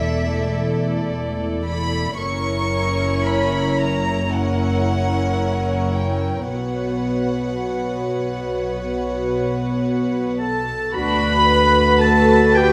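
A rubato pulse of roughly 53-57 BPM in 4/4 carries this tender, uplifting cinematic film score in D major, cut from a longer piece, where violin sections bowed sul tasto with light vibrato share the melody and a second line over a dark, floating viola accompaniment, an intimate cello section and a pure double bass section. At 10.4 s a clear, distant oboe enters with its own second line, and from 10.9 s a shadowy French horn section adds sustained chords as the harmony settles on D6. Soft attacks throughout give the strings a hushed, velvety glow, set in a moderate scoring-stage reverb.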